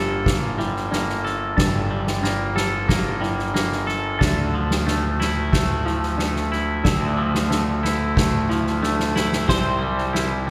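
Post-rock at 91 BPM in G dorian, this brooding, cinematic excerpt from a longer piece is led up front by a punchy fuzz-overdriven picked bass and a soft-mallet drum kit with a boomy kick and dark cymbals, which enters at 0.3 seconds. A twangy, compressed clean electric guitar plays arpeggios, while a bright pedal steel holds sustained chords and a round, tine-like FM synth pluck with chorus warbles arpeggios in the background, all moving from Gmadd9 to Dmadd9. After a drum fill at 8.8 seconds, the harmony shifts to C at 9.5 seconds as a twelve-string electric guitar enters with a melody, all set in a concert hall's moderate reverb.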